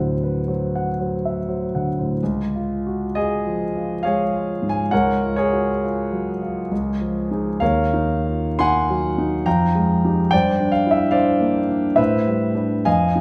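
A lone concert grand opens on a D9 chord before settling into D-flat major, unfolding a dreamy, serene impressionist classical passage in a rubato 3/4 at 58-75 BPM. The piano sits up front, intimate and smooth with a vintage character, deep bass and long sustain, its audible action noise blending into a recital-hall reverb. From 2.2 seconds the harmony drifts through lush added-ninth and eleventh chords, from Dbadd9 through Gbmaj9/Db to a closing Am11 at 12.0 seconds, in a fragment cut from a longer piece.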